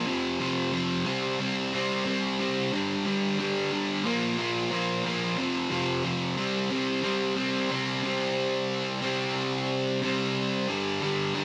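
A sludgy, overdriven electric guitar, picked, double-tracked and placed up front, plays alone through this anthemic, cathartic rock fragment at 90 BPM in a straight 4/4, tuned to A4 = 441 Hz and moving through F5, C5, G5 and Bb5 chords in a moderate studio ambience before it stops at 11.4 seconds.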